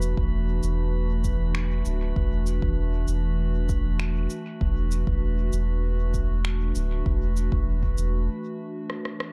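Ambient dub at 98 BPM with a hazy, spacious mood, built on an E5 chord where a warbling, nostalgic tape-like pad with chorus and reverb holds sustained chords, a round, soft dub sub bass with tube saturation sits up front, a glassy texture of drifting overtones with chorus and reverb floats high above, an electronic shaker with finger snaps and rim click carries dub echo, and a deep electronic kick stays in the background, all in a dark production that drops into a break at 8.3 seconds before a short drum fill at 8.9 seconds.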